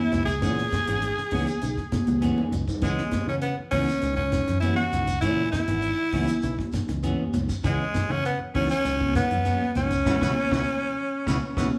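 This funky, intense afrobeat excerpt opens with a raspy tenor saxophone, up front and close-miked, carrying the melody with gritty edge, vibrato and scooped notes over a single C#m7 chord at 100 BPM in a straight 4/4. Almost at once the band joins: a damped 70s drum kit with a fat snare and tight kick, a round, dark fingered electric bass, and high-tuned, ringing congas sitting distant in the background alongside a grainy shekere. A clean electric guitar adds picked stabs from further back, while a very quiet semi-hollow guitar traces dark, hollow-bodied arpeggios underneath. A drum fill arrives at 1.9 seconds, and the full band hits an accent from 10.1 seconds until the cut. The group sounds like it is playing live in one room, wrapped in a large, wet studio reverb that frames the dry drums and the saxophone's solo voice.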